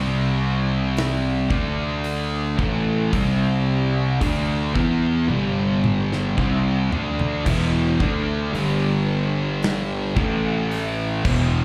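Stoner and doom metal at a crawling 55 BPM in 4/4, ominous and sludgy: an up-front, lo-fi, double-tracked overdriven garage guitar riffs alongside two thick, distorted fuzz guitars, one set in the background, over an up-front picked bass with overdrive and fuzz. A big acoustic rock kit with punchy kick and bright cymbals enters at 1.0 s and plays a fill from 5.3 to 7.5 s, the band heard as a live club gig through the venue's PA with little reverb, while the chords move through C5, D5, A5, G5 and Gsus24/C, then E5, G5 and A5.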